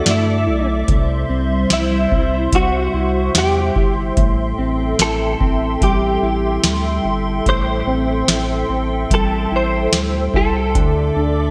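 A booming analog drum machine sits up front in straight 4/4, its deep kick, crisp snare and metallic hats drenched in gated reverb from 0.1 s until it drops out at 10.9 s, while a thick, saturated sub bass holds down the low end. In this hazy, ethereal dream pop passage cut from a longer piece, a dark, fingered electric guitar plays arpeggios through lush chorus and delay, and a hollow, flute-like pad warbles alongside with sustained chords. A clean, picked, compressed lead guitar carries the melody with chorus and delay over Dsus2 shifting to C at 0.9 s and back to Dsus2 at 10.8 s, all framed in a moderate hall reverb and a bright 1980s-style digital sheen.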